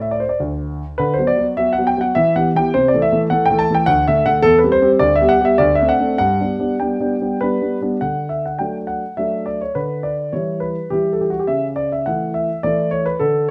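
A warm, present, up-front grand piano with long sustain rings through a moderate large-studio reverb in this short cut from a longer classical-period sonatina. Played solo at 104 BPM in 3/4 with a rubato feel, the piano spans D2 to A5, moving cheerfully and elegantly through G major before shifting to D major at 8.0 s for a new section that runs to 13.5 s. The instrument is tuned to A4 = 442 Hz, and its harmonies pass through chords such as Em, D7 and A/C# with graceful poise.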